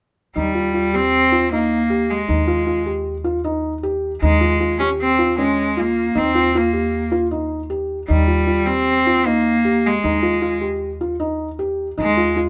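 This contemporary chamber piece, cut from a longer work, moves in a straight, restless 5/4 with a playful edge. A single bowed cello carries the melody, its tone bright and nasal with light vibrato and an earthy grain, sitting up front in the mix. Beneath it, a felt-muted upright piano plays arpeggios in a mellow, intimate register, its thick felt giving a soft, vintage darkness. A pizzicato upright bass on gut strings stays on one low note, adding a woody, thumpy foundation at a lower level. The harmony shifts between an added-ninth chord and a slash chord built over the same bass note, with the three instruments entering together at 0.4 seconds and playing through to about 12.5 seconds. Close, detailed microphones and a light reverb keep the sound clear and immediate.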